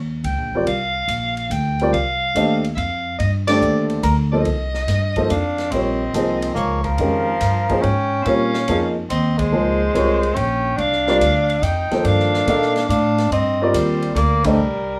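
Modal jazz in a swinging 3/4 at 142 BPM, hypnotic and searching, this short cut from a longer piece drifts between Bbm9 and Cm9 over a woody, thumpy pizzicato upright bass. A distant, roomy soprano saxophone with vibrato carries the melody, while a dark, slightly detuned upright piano sits up front in accompaniment. An airy big-band drum kit with a punchy kick and ride cymbal swings along, with band accents at 3.4 and 9.3 seconds, and a vintage tenor saxophone with light vibrato enters at 5.3 seconds on a second line, the whole captured as a rough home demo in a small, wet room.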